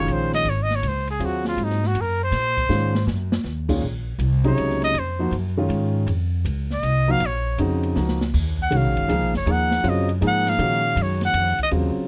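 A breathy trumpet with light vibrato and scooped notes solos up front through this cool, hypnotic modal jazz piece in swung 3/4, backed by an intimate upright piano with audible action noise, a thumpy gut-string pizzicato bass and a dark, smooth small-room drum kit with a boomy kick that adds brief fills at 2.7 and 8.0 seconds, all captured with close, detailed microphones and little reverb in a passage cut from a longer piece.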